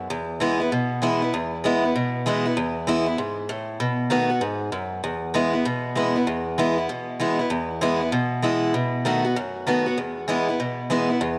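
Swung eighths in 4/4 drive this rowdy, rollicking rock excerpt, in which a lone picked steel-string acoustic guitar with a bright, boxy parlour tone sits up front, colored by tape echo, and moves between E and B7 chords inside a moderate echo chamber reverb.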